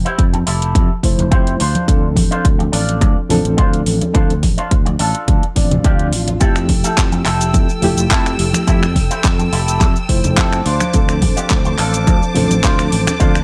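Dry and close, this groovy, feel-good nu-disco excerpt rides a punchy, up-front electronic kick beneath a pop kit of metallic hi-hat, cabasa, finger snaps and handclaps, with soft-handed congas tucked behind, a growly, overdriven fingered bass that pumps against the kick, and a twangy envelope-filtered electric guitar riff touched with subtle chorus and digital delay, while a reedy, lightly overdriven electric piano with fast tremolo and delay joins at 1.0 s, and a faint electronic swell from 5.7 s ushers in a soft-attack, sul tasto studio string section holding pumping chords from 6.4 s.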